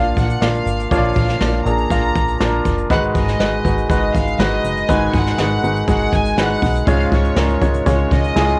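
A lightly reverberant home cassette recording carries this bittersweet, dramatic piano-driven pop excerpt at 121 BPM in a straight 4/4, moving through Bb, Abm7 and Db. A clear, up-front baby grand piano with cassette tape colour and plate reverb leads the accompaniment, while a floating, bowed violin section with a soft attack carries the melody through the tape's haze. Beneath them, a punchy, dark analog bass with a filter pluck and a moving notch sits beside a small-room jazz kit played with brushes, its boomy kick, medium-tuned snare and hi-hat also touched by cassette tape.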